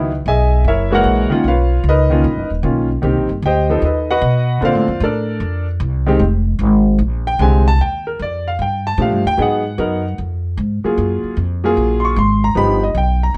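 A concert grand piano and an upright bass start together and play through the whole 13.4-second fragment of this relaxed, swinging small-group jazz piece in 4/4. The piano accompanies in an intimate, natural voice with deep bass and audible action noise, sitting up front beside the bass. The pizzicato upright bass, strung with steel, has a woody acoustic tone and holds down the low end. The harmony moves through rich extended chords such as Dbm11, Bmaj9#11 and Ebmaj9#11, passing through Bb13 and closing on G7alt. The passage falls into two matching sections, the second beginning at 7.8 seconds. Light reverb, a dark, warm production and a faint mains hum shape the overall sound.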